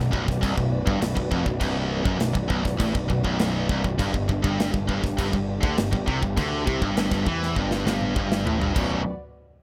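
A heavy metal excerpt opens with everything at once: two high-gain distorted guitars grind out a riff in the low register, one scooped and bright up front, the other tucked further back. A fuzz-laden electric bass growls beneath them with gritty overdrive, while a tight, acoustic drum kit drives a relentless straight pulse with a tight kick, medium-tuned snare and bright cymbals that carry an airy, big-room sheen. Behind the wall of guitars, a muted studio string section holds dark, veiled sustained chords with vibrato, adding a shadowy layer to the heavy mood. The harmony moves from B minor to a G power chord at 4.0 seconds, and a drum fill arrives at 7.6 seconds before the return to B minor. The mix is dry and close, with the drums and scooped guitar pushed forward for a polished sound.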